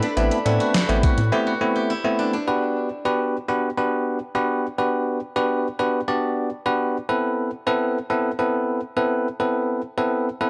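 Nostalgic and upbeat, this short synth-pop excerpt moves at 104 BPM in a straight 4/4, centred on G major. A bell-like tine electric piano carries the accompaniment from start to finish, its clean, direct tone sitting up front, while a detuned sawtooth pad with chorus hums softly in the background for the first 2.4 seconds. A steel-string zither, played with fingerpicks, adds silvery, ringing arpeggios through an analog delay until about 5.1 seconds. At the outset, an overdriven gated 80s drum machine, re-recorded in a large room, punches in with a thumpy kick, hi-hat and a gated-reverb snare, joined by a round, deep bass with a fast attack; both stop at 1.3 seconds, opening a break. The harmony shifts from Amadd9 to Gmaj7 at 2.5 seconds and back again later, all set in light digital ambience with a dry, gritty hardware character and transformer saturation.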